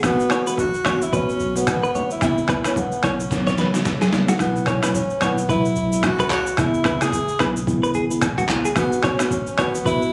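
A smooth, mellow afrobeats groove at 110 BPM in 4/4, cut from a longer piece, swings its sixteenths gently over a cycle of Eadd9, C#m7 and Badd9 chords. A gritty, sampler-style trip hop kit sits up front, pitched down, compressed and overdriven, with a thumpy kick, medium-tuned snare, rim clicks, snaps, handclaps, shaker and toms. A drum fill from 3.3 s leads into the second section at 4.4 s. A mellow tine electric piano carries the chords cleanly, while a deep, punchy sine sub bass with a pitch-drop attack hums in the background, and faint vintage congas and bongos add hard-handed accents until 4.3 s. Over this, a breathy, close-miked tenor saxophone plays an intimate, whispered jazz-style solo with vibrato and a soft attack, and a twangy, direct-recorded clean electric guitar picks a bright riff, both carrying tape echo. The whole mix has the feel of a phone capturing a club room, with light reverb and compression.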